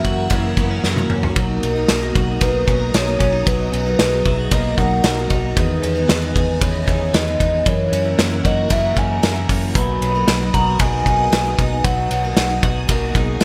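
Nostalgic and breezy, this jangly indie pop excerpt in B major moves at 114 BPM, with a hollow, woody clarinet-like synth lead carrying the melody through chorus and digital delay over a mellow soft-mallet vibraphone, a picked steel-string acoustic guitar with finger squeak, a swirling phased string machine, a twangy twelve-string electric guitar playing arpeggios, a round foam-muted fingered bass and a punchy, up-front indie drum kit with gated reverb, whose fill at 0.8 seconds leads into chords moving from Bmaj7 to Emaj7 and F#7, all set in a lush hall reverb with bright 1980s-style digital production.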